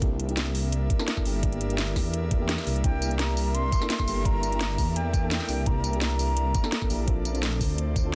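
A straight 170 BPM liquid drum and bass groove of knocking electronic kick and an up-front garage kit with cracking snare, metallic hi-hats and tambourine under a deep, rumbling detuned saw bass, while a round, warbling FM electric piano with chorus, tremolo and dub echo and an airy, pumping pad sit on C7 before shifting to Bbmaj7, and a hollow, breathy jazz flute with vibrato and delay carries a soulful melody from 2.8 to 7.0 seconds in this dense, lightly reverberant cut from a longer piece.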